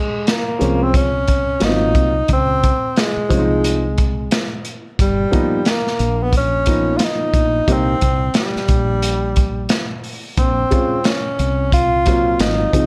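Dark, warm production with a light reverb gives this short clip from a longer piece a mellow, nocturnal glow. It is a jazz-hop groove in Bb dorian at 89 BPM in 4/4, with a swung sixteenth-note feel. A breathy tenor saxophone carries the melody from the very start, playing up front in a subtone with light vibrato and scooped notes in a relaxed jazz style. A crunchy breakbeat kit enters at 0.3 seconds, its saturated, gritty sound and rolled-off top placing the tight kick, medium-tuned snare and hi-hat close to the listener. At 0.6 seconds an upright piano with a woody, short-sustained tone and a round, punchy fretless electric bass join in underneath. The harmony moves from Bbm9 through Ab13, Dbmaj7, G7alt and C7(no3) before settling back on Bbm9.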